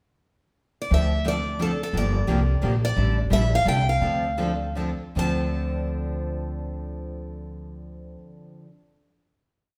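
A bright, boxy parlour guitar opens the piece alone with a pickup at 0.8 s, then carries a free-roaming lead line up front in this fiery, bittersweet acoustic string swing (jazz manouche) piece in a swung 3/4. Behind it, a full-bodied dreadnought with fresh strings strikes a chord on every beat, short and accented on two and three, while a second parlour guitar adds a fainter rhythm part in the background. An upright bass with gut strings sits up front, woody and thumpy, outlining roots and fifths with walk-ups beneath a progression that moves from Dm9 through Gm7 and A7sus4 to Dm7. The band slows down from 3.0 s into a held final chord at 5.2 s. The quartet plays live in one room, bathed in a generous large-studio reverb that gives the whole performance an airy, spacious glow.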